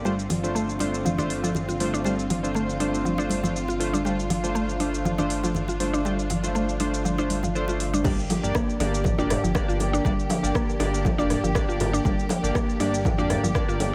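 Driving and earthy, this afro house excerpt moves at 120 BPM in G minor with a 16th-note swing, as lush bowed strings hold sustained chords, vintage analog keys play airy, chorused stabs with delay, a dark gliding synth bass anchors the low end, and a woody FM mallet pluck spins arpeggios, all pumping against the beat. An electronic afro-pop kit with metallic hats, rim clicks, shaker and toms runs throughout, while dry, hard-hand congas sit in the background over a Dm7/G harmony until 8.0 s. At the drop at 8.1 s the chord moves to Gm, round low-tuned bongos take over, a punchy overdriven electronic kick arrives, and a very quiet electronic impact marks the change, all in light reverb.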